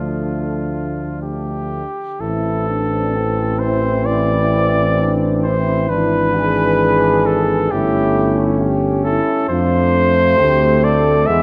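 A classical, hymn-like piece for brass band in A minor, this melancholic and elegiac passage moves at a slow 66 BPM in 4/4 with a rubato feel, and it is cut from a longer piece. A mellow cornet carries the melody up front with light vibrato and a smooth top, while a tight French horn section with a vintage tone sings a second line beneath it. A clear trombone with a soft attack sits distant and roomy in the background, joined there by a present, clear trombone section filling out the accompaniment. Anchoring everything is a dark tuba bass, placed up front with its own soft attack and gentle vibrato. The harmony drifts from D minor to A minor at 2.2 seconds, then through E7 over G sharp and A7 over G before settling on D minor over F at 9.5 seconds. A moderate concert hall reverb and a dark, warm production give the ensemble a solemn, enveloping glow.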